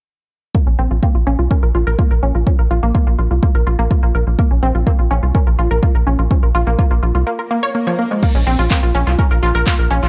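A straight 4/4 pulse at 125 BPM drives this dark melodic techno fragment in Bb minor, anchored by a layered, up-front electronic kick and a tight, punchy sawtooth sequencer bass with sidechain pumping. Above them, a lush, detuned unison pluck plays arpeggios through tape echo, and both pluck and bass carry filter sweeps up to 8.2 s. A break arrives at 7.3 s, a background electronic swell sounds from 7.5 s, and then a deep house kit of crash, handclaps and smooth hi-hats with dub echo enters at 8.2 s. The mix, cut from a longer piece, is dry and echo-heavy.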